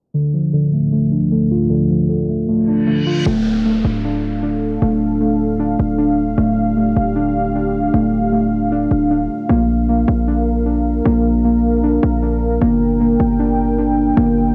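Over a half-time 4/4 pulse at 154 BPM, this brooding, melancholic hip hop excerpt in D minor sets muted, felt-like synth keys playing intimate arpeggios through chorus, cassette tape and tape echo above a deep, warbling analog pad, while a mellow tine electric piano accompanies only until 3.3 s, a filter sweep shapes the opening and a reverse cymbal and downlifter usher in a punchy, heavy 808-style bass that enters at 3.3 s to anchor the Dm, Bb and Gm chords, all set in a small room with a low-pass filter for a hazy home-cassette sound.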